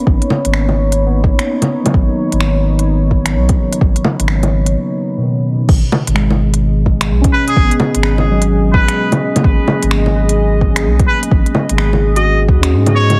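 Muffled, felt-like synth keys and a deep, moody pad open this nocturnal, wistful future garage excerpt. The keys are soft and intimate, colored by chorus and analog delay, while the detuned pad sits dark beneath them in its own reverb, and both breathe under sidechain pumping. Almost at once a round sine sub bass and an overdriven, layered electronic kick arrive up front, joined by an organic-sounding electronic kit of crisp hats, bongos, finger snaps and crash cymbal, its groove swung on the sixteenths. A brief break at 4.8 seconds leads into the second section, and at 7.3 seconds a trumpet with a straight mute takes the melody, nasal and brilliant with vibrato, set distant and roomy behind an analog delay. The mix carries a heavily compressed, radio-like sheen with cassette tape color and light digital ambience.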